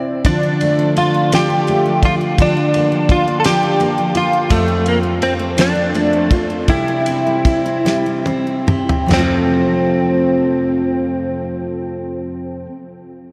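Tender and heartfelt, this short cut from a slow six-eight pop ballad in F major, around 46-57 BPM, sets an up-front, compressed clean electric guitar melody with analog chorus and delay over a full-bodied fingerpicked jumbo acoustic guitar, a bright picked dreadnought adding arpeggios with finger squeak in the background, and a damped 70s drum kit with a fat snare, tight kick and dark cymbals that, as the tempo slows from 4.5 s, plays a fill at 7.9 s and stops at 9.3 s, the mix soaked in a huge, dreamy reverb.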